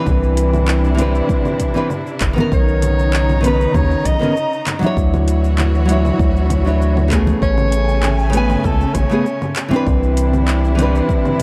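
A straight 98 BPM groove in 4/4, driven by an overdriven electronic kick and an overdriven deep house kit with metallic hats, handclaps and shaker, and joined at 1.0 seconds by very quiet, close, hard-handed congas, carries this blissful, smooth sunset chillout excerpt, where a bright, fingerpicked nylon-string guitar with analog delay and a round, dark, up-front analog bass sit alongside rich bowed studio strings with vibrato, while a distant, roomy soprano saxophone with analog delay plays a jazz-style solo melody from 2.5 to 9.6 seconds over lush major ninth chords, all in a dry, gritty small-room hardware sound.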